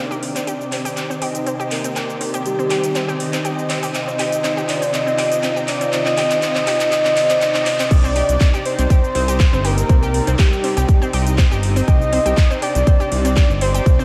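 Progressive house in a dreamy, emotional mood, this 14-second cut from a longer piece builds up over its first 7.9 seconds before dropping. A mellow, octave-layered synth lead carries the melody with chorus, vibrato and a diffuse delay, while a filter sweeps across it and across the smooth, detuned supersaw stabs that sit under a low-pass filter. Dark, bowed studio strings hold sustained chords in the background, a nasal analog pluck spins arpeggios, and a house kit with metallic hats, handclaps, shaker and crash plays a fill through the build, all pumping against the sidechain except the drums. At 7.9 seconds the drop brings in a punchy, up-front electronic kick, a fat, thick sawtooth bass and a very quiet, airy second lead. The whole mix is soaked in a lush hall reverb that gives it a floating, spacious sound.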